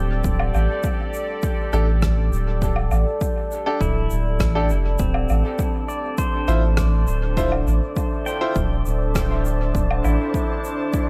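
Deep and spacious, this ambient dub excerpt moves at 101 BPM in a straight 4/4 over a single D7sus2 chord, anchored by a round, soft sub bass up front and a punchy, overdriven electronic kick, with shaker, woodblock and rim click adding dub echo in a small room. A moody, evolving pad with chorus holds sustained chords while a twangy pedal steel guitar, played with fingerpicks and slide, traces arpeggios through dub echo. A woody upright piano with 12-bit sampler grit drops echoing stabs in the background from 1.7 to 8.5 seconds, and an airy, breathy tuned noise texture drifts in at 5.0 seconds.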